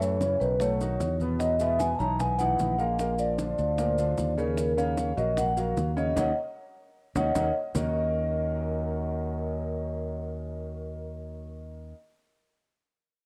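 This sultry, sophisticated Afro-Cuban jazz excerpt in Eb minor at 151 BPM opens with a mellow, ringing vibraphone melody played with soft mallets and a slow motor vibrato, shadowed by a veiled, breathy cup-muted trombone and a natural grand piano, all carrying a cassette-tape tint. Beneath them a growly, punchy fingered electric bass sits up front, while quiet low-tuned congas, round, dry bongos and grainy maracas drive the groove until 7.8 s, with a band accent from 6.2 s and a drum fill from 6.8 s closing out the percussion. Moderate spring reverb gives the home-recorded sound a sultry glow as the harmony moves from Gbm7 through B7, Esus2 and Bb to Ebm7.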